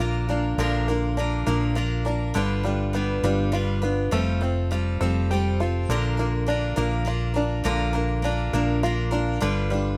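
A round, punchy hollow-body short-scale electric bass sits up front with a dark, amped tone, anchoring this gentle, warm acoustic folk excerpt in 6/8 at 68 BPM. A bright, picked steel-string acoustic guitar with fresh strings and audible finger squeak shares the foreground as accompaniment, while a twangy, plunky open-back banjo adds fingerpicked, percussive arpeggios. All three play throughout the 10 seconds over light reverb, moving through Bb, G7 and Fadd9.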